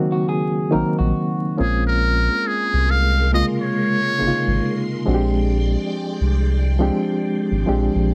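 Vinyl crackle and light reverb frame this short, introspective R&B fragment, which moves with a smooth, swung sixteenth-note feel. A reedy electric piano with fast tremolo carries the accompaniment up front from the start, and a deep, dark analog bass joins close beneath it at 0.7 seconds. A slightly broken-up, lo-fi electric guitar adds a brief second line in the opening moments, giving way at 1.6 seconds to a trumpet with a metal mute, whose buzzy, breathy tone and vibrato carry a jazz-style solo melody until 4.9 seconds. From 2.0 seconds a vintage string machine, swirling with ensemble chorus and phaser, lays warbling sustained chords quietly in the background. The harmony passes from Cm7b5 to Bbm9 and settles on Bb13.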